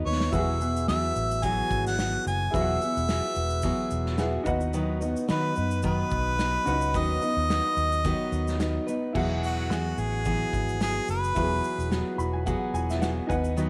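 Acoustic pop at 109 BPM in E major, heartfelt and easy-going, where a clear, up-front harmonica carries the melody over a dark, full-bodied fingerpicked jumbo guitar, a round, foam-muted vintage electric bass, a loose indie drum kit with punchy kick, dark cymbals and shaker, and a woody, slightly detuned upright piano in the background that takes a fill from 11.9 seconds, all in light reverb as the chords move from Eadd9 to B and back.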